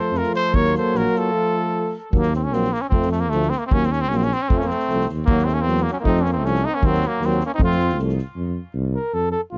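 A mellow, vibrato-laden trumpet carries the melody up front through a touch of tape echo, joined by a smooth-topped flugelhorn second line, soft-attack trombone and vintage euphonium accompaniment, a close-miked tuba bass and a soft-mallet drum kit with a boomy kick and medium-tuned snare, in this restless, bittersweet Balkan brass band excerpt recorded dry and close in a 1970s studio style, with a break at 1.3 s before the flugelhorn takes a short solo at 8.4 s over the tuba.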